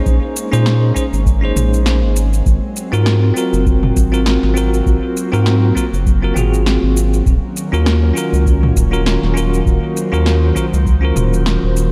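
A lightly swung 16th-note groove at 100 BPM in 4/4 drives this warm, wistful sunset chillout fragment, where a deep electronic kick and an overdriven deep house kit of shaker, punchy snare and toms sit beneath an up-front, round analog bass with tube saturation, while a bell-like tine electric piano with delay and an airy, breathy pad with chorus carry chords moving from Bbm11 to Ab13 at 2.2 seconds and Ebm7 at 7.3 seconds inside a dark mix with light reverb and digital ambience.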